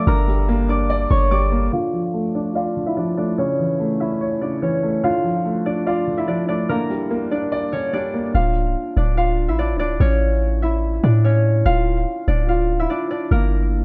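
Dark and melancholic, this trap-leaning hip hop excerpt moves at 145 BPM in a half-time feel, set in D harmonic minor. A concert harp carries the melody throughout, its thumb-plucked, ringing tone sitting up front and softened by a low-pass filter, plate reverb and tape echo. Beneath it, a dark concert grand piano supplies mellow, somewhat boxy accompaniment with deep bass, also filtered, until it drops out at 8.4 seconds. A boomy 808-style bass with a sine body, a noise layer and a fast, decaying attack appears briefly at the start, falls away at 1.7 seconds while a filter sweep runs through the middle passage, then returns at 8.3 seconds for the final stretch. The chords cycle through Gm, Dm and A, giving the short cut a brooding, circular pull within a light reverb.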